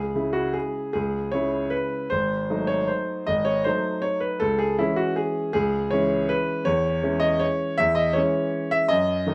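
A clear, woody upright piano plays alone, up front with a polished tone and long sustain, through this bittersweet, elegant classical waltz in 3/4, its uneven beats and rubato pulling the phrases as the harmony moves from C#m to G#7b9 and back to C#m and C#m/E across a range from G#1 to E5, all within a light reverb in a short cut from a longer piece.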